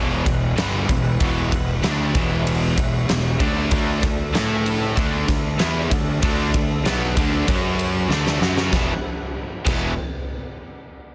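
Two double-tracked overdriven guitars, one dark and one crunchy, open this powerful, energetic hard rock excerpt alongside a round, fuzzy picked bass and a very quiet, silky analog string pad holding sustained chords, before a huge, punchy arena drum kit with a fat snare and bright cymbals comes in up front at 0.3 seconds and drives to a fill at 8.1 seconds, within a dense, heavily limited, dry mix.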